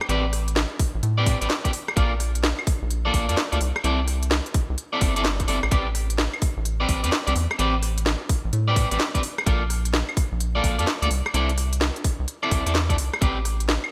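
Bright, 1980s-style digital production with light reverb frames this bouncy, late-night two-step UK garage cut, where a swung garage kit of claves, crisp hats, rim click and cracking snare meets a tight electronic kick entering at 0.8 seconds, a rubbery, hollow square bass with sidechain pumping, and slightly broken-up electric guitar stabs bathed in lush chorus and digital delay over chords cycling through Am11, Bbmaj7 and C69.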